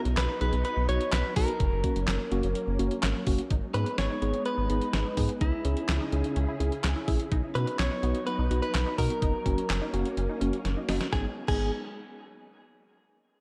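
Cool and melancholic, this synth-pop excerpt moves at a steady straight pulse in common time, cut from a longer piece. A round, deep analog bass sits up front beside a clean 12-bit drum machine with a thumpy kick, fat snare, hi-hat, handclaps and crash cymbal, its sampler-style hits carrying a small-room character. A mellow tine electric piano and a silky, warbling string machine with ensemble chorus fill in the harmony, while a direct-recorded clean electric guitar, picked and compressed, carries the melody through a diffuse ambient delay. At 3.5 seconds a detuned unison pluck joins in the background with lush chorus and delay, adding short, punchy arpeggios as the chords move from G#m through C#m, B and F#. A drum fill at 10.6 seconds leads back to G#m, and the whole dreamy mix is soaked in hall reverb.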